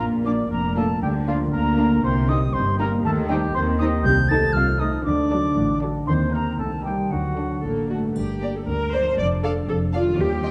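A pure, straight-toned flute sounds from the start of this playful, whimsical cinematic cue, its tongued high line paired with a roomy, distant oboe until both drop out at 7.6 seconds. Beneath them, a mellow French horn section holds tight sustained chords, while a ringing harp spins fingerpicked arpeggios in the background. Bowed double basses and a lush cello section anchor the bass, and violas with a smooth top fill in the accompaniment. Two violin sections join almost at once: one carries the very quiet, even melody and the other an expressive second line. A triangle adds a brief touch of percussion at 8.2 seconds as the harmony turns toward a minor colour, giving the magical, sneaky mood a final glint. The whole cue is cut from a longer piece and bathed in a dark, warm concert hall reverb.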